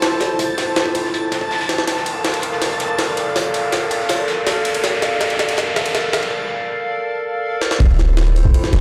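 Drum and bass in a jungle vein, nostalgic and atmospheric, this short cut builds over a warbling, lo-fi tape-like pad with chorus, a gritty, pitched-up sampler-style jungle kit up front, a very quiet, dark breakbeat kit beneath, and a dreamy reversed texture swelling in the background alongside an electronic riser, until a break gives way to the drop at 7.8 seconds, where an impact lands with a deep, boomy 808-style bass carrying tube saturation, inside a large studio reverb.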